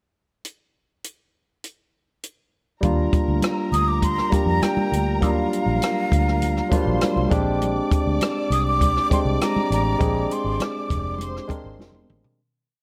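A light small-room reverb frames this romantic, lush 1970s-style soul piece at 100 BPM in Eb major, where a dry, punchy cocktail drum kit with a high-tuned snare plays alone through a pickup bar before barky, up-front tine electric piano push chords, a dark foam-muted fingered bass line with ghost notes and chromatic approaches, soft-handed background congas slapping on two with open tones on four, and long high lines from a clear studio string section enter at 2.8 seconds, joined at 3.7 seconds by a breathy metal jazz flute shaping expressive vibrato phrases until a fade-out and a closing drum fill.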